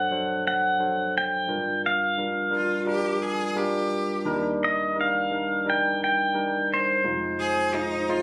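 Captured on a phone in a room with club reverb and compression, this heartfelt, intimate acoustic folk-pop ballad fragment moves at 87 BPM in Eb major, with an up-front, twangy pedal steel guitar singing the melody through fingerpicked slide lines and volume swells over a worn, slightly out-of-tune, lightly overdriven tine electric piano, while a close, airy-bowed single cello with vibrato enters at 2.5 seconds to add an intense second line as the chords move from D7/F# through Gm7 and Ebmaj7 to Fm7.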